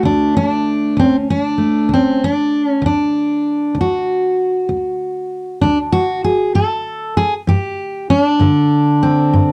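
Laid-back yet rollicking, this short cut from a longer piece is acoustic country blues in D major, rolling along at 65 BPM in a 12/8 metre that is counted in dotted quarters and played with a straight feel. A single fingerpicked steel-string acoustic guitar carries everything alone from 0.0 to 9.5 seconds, ranging from D2 up to A4. Its jumbo body gives a warm, full-bodied tone on fresh strings, and finger squeak can be heard as it sits up front with a slapback echo. The harmony rests on D before moving to a G5 chord at 6.5 seconds. The sound is a dry, close 1970s-style studio recording touched with light reverb, tuned slightly low at A4 = 439 Hz.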